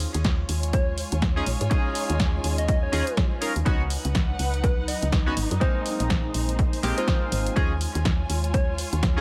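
Deep house at 123 BPM in Eb minor, this smooth, moody excerpt swings its 16ths over sus4 ninth chords. A punchy, overdriven electronic kick sits up front from 0.2 s beside the dry hi-hat and snare of an analog drum machine, while a woody, round FM bass and a very quiet, warbling, nostalgic tape-like pad hold the low end and background. A dark bowed string section with vibrato and portamento pumps to the sidechain, bright chorused analog key stabs with ring modulation and digital delay enter at 1.4 s, and a gentle, keys-like FM lead with chorus and delay carries the melody from 0.7 s, all under light reverb.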